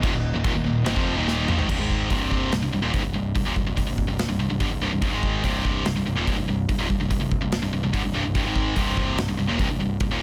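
Heavy metal in a dark, aggressive vein, cut from a longer piece and played with a straight four-beat pulse. It opens on a very quiet pipe organ holding thick, romantic chords on its foundation stops, alongside a faint, double-tracked sludgy guitar riff. A drum fill from 1.3 seconds leads into the main section, and the organ and sludgy guitar stop at 1.7 seconds. Two picked guitars carry the riff throughout: one bright and overdriven, sitting up front, the other high-gain and distorted. Beneath them an overdriven picked bass growls in the background, while a big acoustic kit with a punchy kick, medium-tuned snare, crash, hi-hat and toms drives the track from up front. The sound is dry and dense, with a heavily limited modern master.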